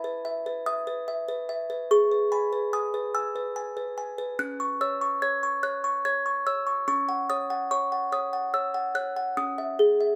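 Dreamy and innocent, this classical lullaby in E major drifts at 48 BPM in a gentle 6/8, carried by a solo music box whose delicate, tinkling, slightly out-of-tune plucked tones sit up front in a close, detailed and nearly dry recording, ranging from C#4 to G#6 across a 10.2-second fragment cut from a longer piece.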